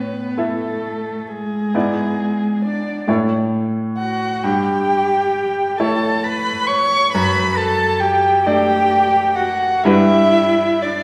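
Classical, a slow romantic movement for piano trio in 6/8 at 44 BPM with a rubato feel, tuned to A4 = 444 Hz, serene and warm in mood and cut from a longer piece. A dark, woody violin carries the melody up front with vibrato and sul tasto bowing, while a cello with a soft attack, light vibrato and sul tasto tone adds an intimate, close second line beneath it. A brilliant, open grand piano with short sustain supplies the accompaniment across all 11.0 seconds, and the trio sits back in a recital hall reverb.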